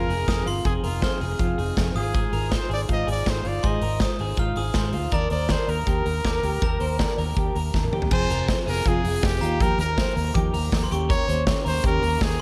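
A straight 4/4 beat at 161 BPM drives this breezy, nostalgic slice of jangly indie pop in Eb major, cut from a longer piece. Up front, a big acoustic rock drum kit sets the pace with a punchy kick, a medium-tuned snare, hi-hat, toms and bright crash cymbals, while a vintage muted fingered electric bass supplies a dark, round low end. A full-bodied jumbo steel-string acoustic guitar plays picked accompaniment, and an electric guitar through a small old amp adds twangy, slightly broken-up arpeggios soaked in analog delay. Over them, a bright trumpet carries the melody with vibrato and a smooth top, its lines echoed by analog delay, while a sparkling, bell-like glockenspiel struck with brass mallets rings a second line in the background, also through analog delay. The chords move from Fm7 through Ab6 to Ebmaj7, and a drum fill at 7.7 seconds leads into a new section at 8.1 seconds that passes from Fm to Ebadd9 and Eb7, all set in an echo-heavy mix with light, small-room reverb.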